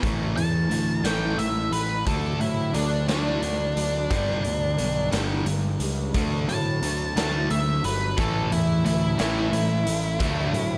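Cathartic and brooding, this cut from a quiet-loud alternative rock piece moves at 59 BPM in 6/8, with an up-front, dark octave-fuzz lead guitar soloing from 0.4 seconds with slapback echo over a bright, compressed fuzz guitar riff, a punchy overdriven fuzz bass, a gritty garage drum kit of kick, snare and hi-hat in a pumping stone room, a very quiet, slightly broken-up guitar arpeggiating through a small old amp, and a tight distorted guitar riff joining in the background at 8.2 seconds, all moving through A5, D and G in light reverb.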